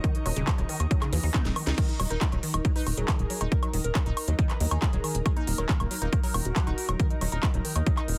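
A heavy, overdriven electronic kick sits up front in this alien, hypnotic psychedelic trance excerpt, driving a straight 4/4 at 138 BPM in Eb minor. Around it, a layered techno kit adds a cracking snare, smooth hi-hats, handclaps, toms, woodblock and crash cymbal, with a drum fill from 1.3 to 1.8 seconds. A tight, punchy sequencer bass enters at 0.3 seconds with a saturated sawtooth-and-square bite. A woody, wave-folded pluck plays a riff coloured by cassette tape grit, chorus, dub echo and sidechain pumping. From 1.8 seconds, a gritty, guitar-like overdriven lead screams in the background through phaser, chorus, vibrato and digital delay, over a resonant drone with moving overtones on sustained chords and a faint, ethereal detuned pad, all held in a dense, heavily limited modern mix with little room sound.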